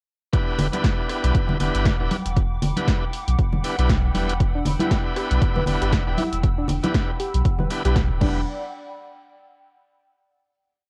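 Heard through a home cassette recording with digital ambience, this smooth deep house piece in E minor sits at 118 BPM with a swung 16th feel, resting on a single Em7 chord from 0.3 seconds before a final hit at 8.5 seconds. A punchy electronic kick holds four-on-the-floor up front, joined by an analog drum machine's hi-hat, rim click, snare backbeat and crash, bright syncopated congas, and a deep, round analog bass riff pumping under sidechain. Above them, an overdriven tonewheel organ shouts syncopated stabs through a fast rotary speaker and tape echo, a hollow, flute-like pad with gritty 12-bit texture sustains high chords, and from 4.5 seconds a gentle, dark pluck adds a chorused, delayed arpeggio.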